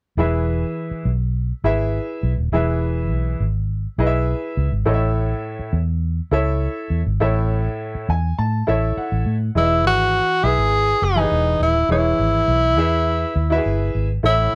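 A straight 4/4 groove at 102 BPM drives this joyful, uplifting excerpt of uptempo 1960s-style soul in E major, cut from a longer piece. From 0.2 seconds a woody upright piano plays accompaniment up front, while a vintage electric bass, dark, round and foam-muted with an amped tone, anchors the low end close beside it. The chords move from E to A at 4.9 seconds, and the piano plays a fill leading toward the turn back to E. At 9.6 seconds a breathy tenor saxophone takes the melody as the featured voice, mellow and subtoned with light vibrato, scooped notes and a smooth, punchy top in a pop style. Light reverb gives the recording a modest sense of space while keeping the players close.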